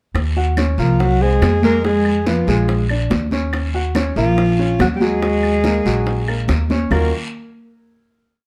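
A warm, vibrato-laced alto saxophone with plate reverb carries a motif-based melody from 0.8 s in this fiery, sultry Afro-Cuban jazz piece in Eb minor at 142 BPM, alongside a bowed cello in octave doubling on a soft-attack sul tasto line, a baby grand playing a piano montuno in octaves, a thumpy gut-string upright bass up front in a tumbao that anticipates the chords, ringing high-tuned congas with slaps and open strokes, round low-tuned bongos in steady eighths with hand bell, woody claves on a two-bar time line and a raspy guiro, all in a dark production that settles on an Ebm9 final chord at 6.9 s.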